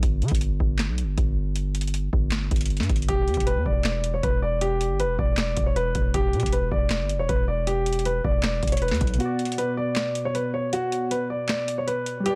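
The sound is close and dry, with little room around it, and the parts sit up front in this hard-hitting, melancholic fragment of a longer hip hop and trap piece. A booming analog drum machine drives a half-time feel throughout, its deep kick, crisp snare, metallic hats and handclaps sounding electronic and dry. A distorted 808-style bass runs beneath it from the start until 9.2 seconds, heavy and aggressive, with a sine core edged by a noise layer and notes that strike fast and decay. At 3.1 seconds a dark concert grand piano carries the melody, mellow and intimate, its vintage tone softened by a low-pass filter, with audible action noise. Near the end, at 9.1 seconds, warbling lo-fi synth keys join as quieter accompaniment, their detuned triangle and sawtooth tones nostalgic and airy, shaped by chorus and a filter sweep.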